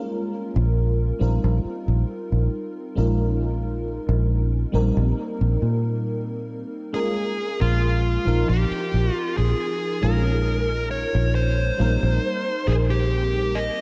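Drenched in a lush 2.8-second hall reverb, this melancholic, woozy vaporwave excerpt at 68 BPM in Bb dorian opens with a mellow FM electric piano and soft pad layer, treated with analog chorus and tape echo, cycling through Bbm7, F9sus4/Bb, Eb9sus4/Bb and Cm7/Bb. A bright, foam-muted fingered electric bass enters up front at 0.6 seconds, and at 6.9 seconds a dark, smooth lead guitar takes the melody, its overdrive roughened by vintage 12-bit sampler grit and tape echo.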